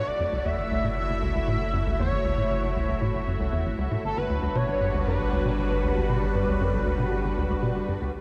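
A dreamy mix soaked in a huge ambient reverb opens this mysterious, hypnotic stretch of sequencer-driven space music, cut from a longer piece and moving at 117 BPM in a straight 4/4 over F#m7 and then Gmaj7 at 4.0 s. A thick, detuned unison pad sits up front with chorus, phaser and shimmer reverb. Beneath it a tight, punchy sequencer bass riff with saturated filter plucks and delay is rounded out by a deep sine-and-triangle analog bass. A smooth, mellow portamento lead sings the melody with vibrato, ensemble chorus, shimmer and delay until 7.6 s, and a bubbling, resonant stepped-filter texture is barely audible at the very end.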